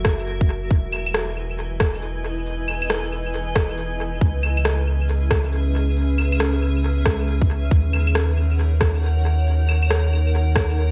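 Future garage with a melancholic, ghostly mood and a swung 4/4 feel: a blurred, evolving granular cloud pad holds sustained chords through its built-in reverb, 12-bit sampler grit and sidechain pumping, floating over a round, mellow sub bass. An overdriven electronic kick stays tight and up front, while an electronic rim click, shaker and claves, also overdriven, are carried by dub echo. A brief break at 3.8 seconds leads back into the groove, and the echo-heavy mix is dusted with vinyl crackle.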